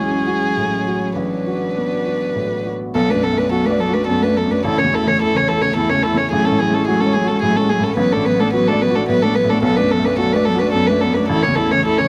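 A solo violin, a cello, a viola, an upright piano and a very quiet ambient pad all sound together from the opening moment of this melancholic, fragile neoclassical passage, cut from a longer piece. In a rubato 3/4 at 108 BPM, the violin carries the melody up front, its rich tone played sul tasto with light vibrato, a soft attack and an airy bow. Behind it, the dark cello adds a smooth second line and the viola supports with vibrato-tinged accompaniment, both intimate single players kept in the background. The slightly detuned upright piano brings a woody, vintage colour to the accompaniment, while the deep, moody pad holds sustained chords with a slow attack, long release and chorus. Close, detailed microphones and light reverb frame the ensemble, and the harmony circles through F#madd9/A, D6/A, Bm7 and A, with a new section beginning at 3.0 seconds.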